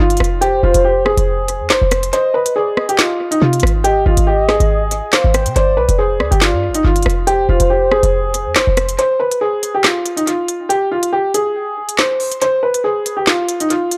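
Dark and tense, this drill-style hip hop cut moves at 140 BPM in 4/4 with a half-time feel, and it is taken from a longer piece. A clear, slightly detuned upright piano carries the melody throughout, its worn, woody tone softened by a low-pass filter and trailed by tape echo. A short, punchy 808-style bass with a noise layer sits up front under it until 9.0 seconds, while the electronic drill kit brings crisp hats, a woody snare, rim clicks and handclaps, also touched with tape echo. A velvety synth lead with chorus and vibrato adds a smooth, sustained second line above the piano from 0.4 to 8.5 seconds, over chords that move through Fm, Ab5 and G5 before returning to Fm. The kick drops out briefly between 2.1 and 3.0 seconds, and from 9.0 seconds a break strips away the chords, leaving piano and drums in a moderate spring reverb within an echo-heavy mix.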